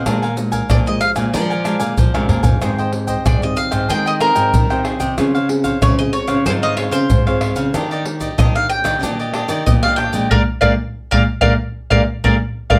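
Samba and choro at 94 BPM in a straight 4/4, bittersweet yet lively, cut from a longer piece, with a round, double-strung picked mandolin carrying the melody up front from 0.7 s over a crisp cavaquinho and a bright, fingerpicked classical nylon-string guitar. A second nylon-string guitar, thumb-plucked with audible finger squeak, holds the bass while egg shaker, deep surdo, pandeiro and tamborim played with soft hands sit close in a live room, adding a drum fill at 2.1 s. The chords move from Bb7 through Abmaj7, Dbmaj7 and Ebmaj7 back to Bb7, where a band accent lands at 10.3 s, all in moderate studio ambience.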